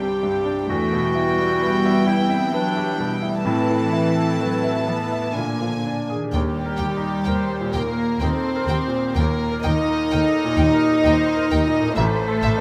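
Cinematic, emotional film score excerpt in a rubato 3/4 at 64 BPM, uplifting and tender, with a floating, sul tasto violin section carrying the melody over brilliant concert grand piano, a mellow, ringing harp in the background, dark, woody violas and a soft-attack cello section on the bass, while a clear solo clarinet plays a second line until 6.3 s, when a second violin line and a distant double bass section enter, the whole captured with close, detailed microphones in light reverb.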